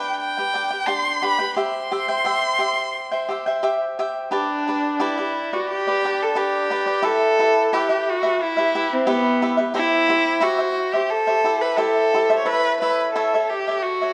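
Set in the moderate reverb of a recital hall, this romantic, festive mariachi fragment, cut from a longer piece, moves at a rubato 88 BPM in 4/4, with a rich solo violin singing the melody up front with vibrato and portamento over a crisp, picked acoustic cavaquinho, shifting from C major to G major at 4.3 seconds as the chords pass through G, E minor, C and A.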